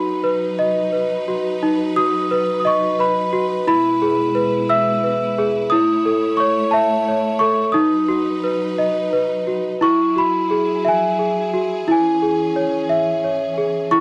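A gentle rubato sway in 6/8, around 59 dotted-quarter beats per minute, carries this sleepy, tender children's lullaby in E major, a fragment lifted from a longer piece and tuned slightly sharp at A4 = 441 Hz. A celesta sings the melody from start to finish, its bell-like, delicate tone struck by hard felt hammers and sitting sweet and up front in the mix, ranging from D#4 up to E6. Beneath it, a studio string section holds sustained, bowed chords, lush and intense with vibrato yet set well back, spanning B2 to C#5. The harmony moves from B through E/B and A back to B, then opens onto Eadd9 at 9.8 seconds before settling on C#m/E for the closing moments. The sound is dry and close in a 1970s studio manner, with little reverb, keeping the glinting celesta intimate and near.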